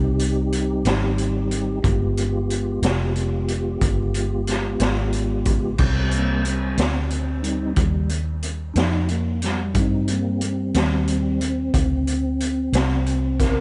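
A soft, flute-like tonewheel organ and a dark, round electric bass open this brooding slow blues together, with a raw garage drum kit joining at 0.2 seconds. Set in 12/8 at 61 BPM in C harmonic minor, the soulful groove rests on a Cm chord before moving to G7b9 and settling back on Cm. The organ holds sustained chords through a clean chorus vibrato and a fast rotary speaker, its key click audible, and from 5.8 seconds it takes a solo that carries through to the end of this excerpt. The foam-muted, amped bass sits up front in a low register, while the small-room drums bring a boomy kick, a high-tuned snare, hi-hat and crash cymbal with a gritty, saturated, mid-forward character and a rolled-off top. Light reverb and studio ambience surround the band, and the recording has a dull top end with a faint mains hum beneath it.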